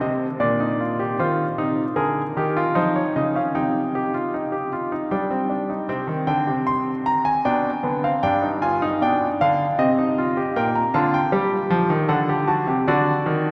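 A clear concert grand piano plays alone throughout this serious, contemplative baroque-style fugue in three voices, set in 3/4 and heard as a fragment cut from a longer piece. The instrument sits up front with deep bass and audible action noise, yet a cathedral-like reverb with a long 5.3-second tail surrounds it in a church or concert-hall space. Harmonies centre on C minor, moving through shades such as Db/F and G7 before the passage reaches D at 12.1 seconds.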